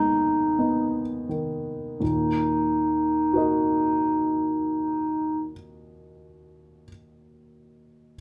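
The clarinet leads this brief excerpt of romantic classical music, a yearning, melancholic duo with grand piano in Eb minor at a slow 46 BPM in 3/4, played with rubato. Up front, the clarinet carries the melody around Eb4 in a solo classical style, its tone warm yet distant and roomy. The grand piano accompanies from Eb2 to Eb5, clear and intimate, with a natural sound and audible action noise close at hand. The opening phrase slows down over Abm/Eb before the music settles onto Ebm at 2.0 seconds, where a new section begins. The clarinet drops out at 5.5 seconds, and the piano carries on by itself until 8.2 seconds, all set in a light reverb.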